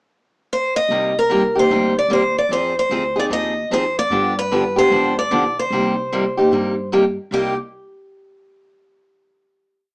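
Acoustic string swing in the jazz manouche style, a complete short piece at 150 BPM in C minor with a swung 4/4 feel, tuned to A4 = 437 Hz, carrying a virtuosic yet bittersweet mood. Both picked steel-string guitars sit up front: a bright, boxy parlour guitar with fresh strings states a motif-based melody of call phrases from 0.5 s, while a full-bodied jumbo guitar plays four-to-the-bar rhythm, short and accented on two and four, through Cm9, Fm7, G7 and Cm7. Lower in the mix, a woody, thumpy upright bass on gut strings plays pizzicato two-beat root-and-fifth lines with walk-ups, and the trio sounds live in a small room with moderate reverb and a small-speaker character, arriving at a final chord at 7.3 s.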